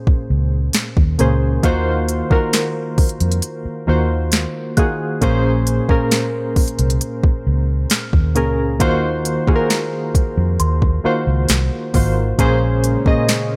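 A dry, close-sounding cut from a longer contemporary R&B piece, moody and late-night at 67 BPM in Eb dorian, where up-front analog keys with chorus and tremolo move between Bbm9 and Ebm69 over a round, foam-muted electric bass and an overdriven, electronic drum kit with a soft kick, sharp snare, crisp hats and rim clicks, while a bell-like celesta with delay sits airy in the background and a shimmering, very quiet pulse-width pad enters only at 12.4 seconds.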